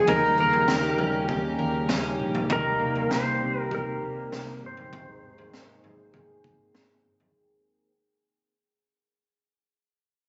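Dream pop at 99 BPM in a blissful, dreamy mood, this brief cut from a longer piece sets a twangy, up-front clean lap steel melody with slide and volume swells over shimmering, octave-doubled twelve-string acoustic arpeggios treated with analog chorus and delay, a soft, flute-like pad holding detuned chords in the background, a round, dark hollow-body bass, and a gritty, saturated garage kit with punchy kick and high-tuned snare entering at 0.1 s, the harmony moving through Eb7, Cm7 and Abadd9 beneath lush hall reverb, a filter sweep and a fade-out running to 7.3 s, all heard as if captured on a phone in the room.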